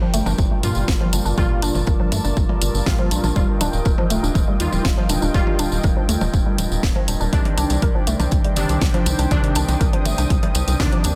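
A smooth, detuned analog pad, a woody wave-folded pluck playing chorused, delayed arpeggios and bright, brassy synth stabs open this dramatic, hypnotic melodic techno excerpt at 121 BPM, with every one of them pumping to the sidechain as the chords move from Gm7 to Ebadd9 to Cmadd9. A tight, punchy sequencer bass, a nasal drone with moving overtones sitting in the background, a cracking techno kit with percussion blips and a jingly, close acoustic tambourine join almost at once, and a heavy, layered electronic kick arrives up front at 0.4 seconds. The sound is dense and heavily limited, with light reverb and a digital ambience, and the drums carry the character of a large room.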